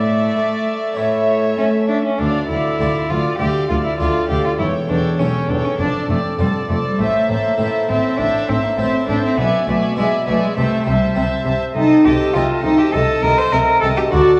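This is a classical, baroque-style concerto movement with solo episodes, cut from a longer piece: stormy and dramatic in D minor, moving at 100 BPM in a straight 4/4. A single up-front cello carries the melody with a rich, lightly vibrato, period-style tone, and a violin section also plays the melody higher up in the background. A second violin section plays a second line, and a viola section fills in the accompaniment, both with reedy gut-string bowing and smooth tops. Beneath them, an airy, brilliant Italian-style harpsichord adds plucked accompaniment, a nasal studio cello section holds the bass, and a double bass section joins it at 2.2 seconds to deepen the low end. The harmony opens on a suspended A chord before settling into D minor and passes through A minor to a diminished chord near the close. The whole recording sits in a reverberant recital-hall space and carries the worn, warbling pitch drift of old cassette tape.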